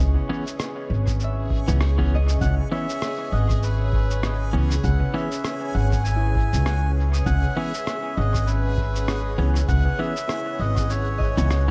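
Swung 16ths at 99 BPM in 4/4 carry this deep, hazy ambient dub excerpt in C# minor, resting on a C#m7 chord, where a woody, thumpy pizzicato upright bass with tube saturation sits up front beneath a moody, detuned, chorused pad, a ringing Celtic harp plays arpeggios through dub echo and a bright, reversed granular texture swells in the background, while clean hollow-body electric guitar stabs with vintage 12-bit sampler grit arrive at 0.3 seconds, a muffled, pitched-down electronic shaker and rim click and a deep analog kick follow, and a reedy, breathy melodica carries the melody from 2.4 seconds in an echo-heavy mix.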